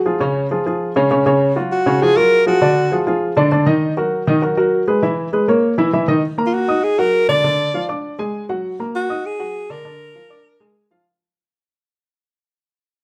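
Set in a moderate large-studio reverb, this sultry, driving jazz excerpt in Eb minor at 199 BPM pairs a dark, mellow baby grand piano accompaniment, intimate with audible action noise and short sustain, with a clear, close-miked alto saxophone solo in plate reverb, up front with vibrato, subtone, soft attacks and scooped notes, first entering at 1.7 seconds and returning at 6.5 seconds as the piece fades out.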